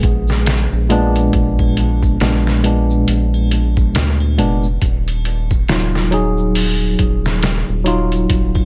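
A worn, slightly out-of-tune tine electric piano accompanies this dark, brooding trip hop fragment, its lightly overdriven tone pushed through a combo amp with harmonic tremolo and tape echo, sitting up front as it carries the harmony from Bb7b9 to Ebmadd9 at 4.8 seconds. Beneath it, a round analog bass blends square and sine tones with tube saturation, giving a deep, sustained low end with a fast attack. The sampler-style drum kit sounds compressed, pitched down and muffled, re-recorded in a small room, with a thumpy kick, a medium-tuned snare and hi-hat moving at a slow 69 BPM with a swung sixteenth-note feel in 4/4. From 0.3 seconds, egg shaker, triangle and group handclap add acoustic, close detail at a lower level. The key is Eb harmonic minor, and the whole piece sits in a digital ambience, cut from a longer work.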